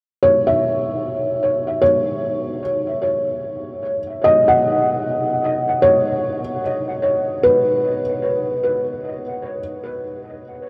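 A felt-muted upright piano enters at 0.2 s and plays alone through to 10.7 s, its notes held within a narrow span from B4 to F#5. This is a serene, spacious ambient excerpt at 75 BPM in a straight 4/4, resting on a single Esus2 chord throughout. The piano sounds dark and intimate, with thick felt softening every note, a short sustain, and audible action noise from the instrument itself. It sits up front, treated with tape echo, while a huge, wet reverb with a long 8.1-second decay opens out the space around it. The whole recording carries the soft grain of cassette tape.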